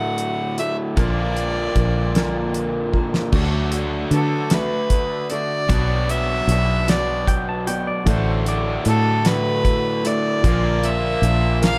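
Hopeful and warm, this folk rock and heartland rock piece in D major moves at a slow 51 BPM in 6/8, with a nasal, reedy fiddle up front carrying the melody and taking a solo from 3.3 seconds, over a boxy ladder-braced acoustic guitar, a bright, overdriven double-tracked garage guitar riff, and a round, foam-muted fingered electric bass. A dry, polished 70s drum kit with a fat snare and tight kick plays a fill just before the solo, where a very quiet grand piano with audible action noise joins, and a clean pedal steel guitar with fingerpicked slide and volume swells adds a brief second line at 7.3 seconds. The chords shift between D, Bb and Bm in a moderate studio reverb, and the excerpt is cut from a longer piece.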